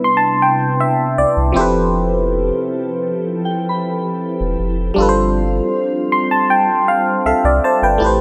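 A glassy FM electric piano with a bell-like attack opens this late-night, moody contemporary R&B excerpt, its chorus and phaser giving it shimmer up front, while an ethereal, full-bodied FM pad and a soft, warbling vintage synth bell with chorus and delay float in the background. A deep, round sine sub bass enters at 1.2 seconds, and the electric piano adds fills over the drift from Cmaj9 through Fmaj9#11 to G7sus4. A light reverb surrounds the mellow, unhurried mix.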